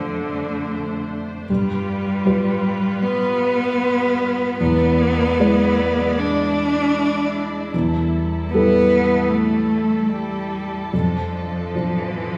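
Intimate and hopeful, this rubato neoclassical fragment at 76 BPM in 4/4, cut from a longer piece, sets a felt-muted upright piano's soft, mellow, vintage accompaniment up front beside a close, focused solo cello playing a bowed second line with vibrato, while a distant, lush studio string section holds sustained bowed chords through Dm7/F, G7, E7 and A5/E, all placed further back in a small room with a wet scoring-stage reverb over its 12.4 seconds.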